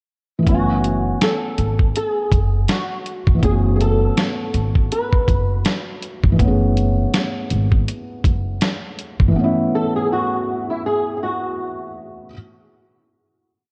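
A felt-muted upright piano opens at 0.4 s with soft, rootless held chords over F#m11, its thick felt and audible action noise giving a mellow, intimate feel, before a dark, thumb-plucked flamenco guitar enters with a free melody through ensemble chorus, analog delay and a low-pass filter. Beneath them, a woody pizzicato upright bass plays a sparse line with chromatic approach notes, and a gritty, compressed sampler-style kit lays down a slumped, off-grid hip-hop beat at 81 BPM with a thumpy kick and 12-bit crunch, both stopping at 9.3 s. The short, melancholic lo-fi hip hop piece in F# minor sits in a dreamy, reverb-soaked cassette mix that lends it a nostalgic haze.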